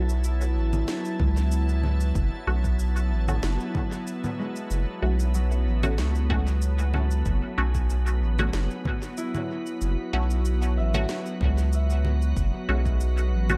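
A gently swung 4/4 groove settles in from 0.1 s, carried by electronic cabasa, congas and a woody snare that were re-recorded in a large room and trail off through dub echo. A deep, layered electronic kick joins at 1.2 s, sitting in the background with a tape-warm weight. Up front, a round analog bass holds the low end with a dark, nasal tone and a quick, sustained attack. Above it, a pure organ-like pad breathes in slowly on sustained chords, bright and shimmering with ensemble chorus and its own reverb, while a muted, detuned, wave-folded chord stab plucks short through a phaser and dub echo. A thumb-plucked concert harp rings out arpeggios in the background through tape echo, and the whole ambient dub passage rests on one unchanging chord, leaving a meditative, spacious mood in this fragment of a longer piece.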